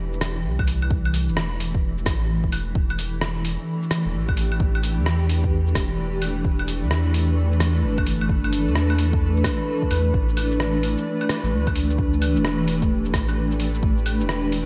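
A granular cloud pad sits up front, its blurred, evolving sustained chords moving from Am7 to Em7 through built-in reverb, lush chorus and sidechain pumping, giving this short future garage excerpt at 130 BPM a ghostly, melancholic mood with a 64% swing on the 16ths. Beneath it, a soft, round dub sub bass holds the low end, while a muffled, tape-toned sampler-style kit of claves, hi-hat, rim click and shaker ticks along and an overdriven, deep electronic kick enters at 0.6 seconds. The dreamy mix is soaked in hall reverb and dusted with vinyl crackle.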